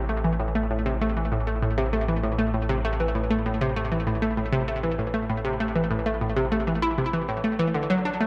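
Opening at once with a bright, up-front analog pluck riff of detuned sawtooth and square waves, laced with ring modulation and a filter sweep and carried by chorus and delay, over a warbling, vintage analog drone of wave-folded, pulse-width-modulated tones with chorus, this hypnotic, expansive cut of sequencer-driven ambient space music moves at 98 BPM in A minor, holding on Am before shifting to D at 7.7 seconds, set in a wet spring reverb and an echo-heavy mix.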